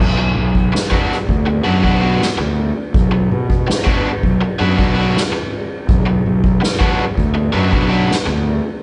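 Psychedelic rock in B minor at 82 BPM in a straight 4/4, this short excerpt cut from a longer piece sets a dark, mysterious mood over a single Bm chord. A fuzz-laden fingered electric bass sits up front from the start, its overdriven tone growly yet bright as it moves between B1 and B2. A soft-mallet drum kit plays throughout on kick, snare and ride, with a boomy kick, a medium-tuned snare and dusky cymbals giving the groove a hushed, natural hall character. At 0.2 seconds an overdriven, double-tracked electric guitar enters with a picked riff between F#3 and F#4, its edge cutting through before it stops at 8.3 seconds. The band sounds as if playing live together in one large studio, with moderate reverb and a rolled-off top end that keeps the sound murky and close.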